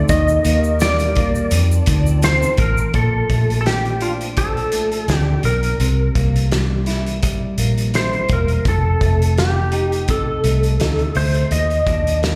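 A clean, twangy lap steel guitar carries the melody up front, its compressed slide lines shaped by volume swells and wrapped in ensemble chorus, slapback echo and digital delay. This short excerpt from a longer piece is laid-back, sunny indie and bedroom pop in 4/4 with a gentle swing on the sixteenths. Beneath it, a dark, hollow-body semi-hollow electric guitar plays fingered accompaniment with subtle chorus, vibrato and its own slapback echo. A round, punchy muted electric bass sits low and amped, while a loose acoustic drum kit with a fat snare and punchy kick pumps in an up-front room sound. For the first 2.9 seconds, an airy, flute-like pad holds soft, slow-attack chords in the background as a grainy egg shaker ticks along; both drop out as the chords move from Ebmaj7 and F7 toward Bbmaj7, C7 and F7. The whole performance comes across like a live gig through a venue PA, with club reverb and a small-room ambience.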